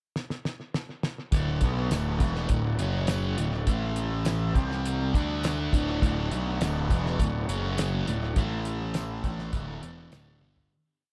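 Hazy and kaleidoscopic, this short psychedelic rock piece moves at 102 BPM in a straight 4/4, centered on D major and tuned slightly sharp with A at 444 Hz. A cloth-damped, thuddy drum kit opens with a pickup fill from 0.2 seconds, its fat snare, tight kick and rolled-off top sitting up front with a groove on the toms and a tape echo trailing behind. At 1.3 seconds the band arrives together: a thick, double-tracked fuzz guitar plays a dark power-chord riff through phaser and tape echo, while a round, overdriven fuzz bass doubles that riff in a syncopated line. Behind them a percussive tonewheel organ holds sustained pad chords, lightly overdriven and turning through a slow rotary speaker, and from 1.9 seconds a jingly, very quiet tambourine adds a bright shimmer. The chords move between D, F#5, A5 and C5, and the echo-heavy mix begins fading at 8.4 seconds, with a last drum fill near 10.4 seconds before it ends.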